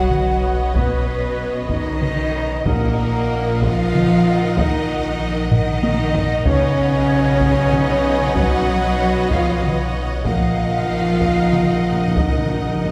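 A dark, relentless cinematic orchestral cue in 6/8 at 63 BPM in Eb minor opens with low cellos and clear double basses under sustained French horn chords, a smooth background string section and viola accompaniment, while heavy-stick taiko drums drive beneath, all heard from back in a reverberant scoring stage. Above them a very quiet, lush violin melody with expressive vibrato is joined in the background by a distant, intense second violin line and a hollow, airy flute, over chords moving between Badd9 and Ebm/Bb. The taiko ensemble plays a fill at 5.5 seconds, and dry, articulate hard-mallet timpani strike briefly at 2.6 seconds before a closing timpani fill from 10.3 seconds in this fragment cut from a longer piece.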